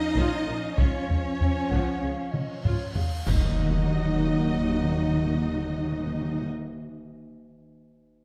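Cinematic, epic orchestral film score in Eb minor at 96 BPM, dramatic and heroic, where a dark, expressive violin melody with soft-attack vibrato rides over smooth background violins, rich distant violas and cellos, woody double basses, a pure, hollow close-miked flute until 3.3 seconds, very quiet mellow French horns and present, tight trombones holding chords, while up-front, dry taiko plays with heavy sticks alongside dark cymbals and concert bass drum, a drum fill and cymbal swell build into a huge, bright impact and band accent at 3.3 seconds as round soft-mallet timpani enter on Eb3, all set in a moderate scoring-stage reverb in a short cut from a longer piece.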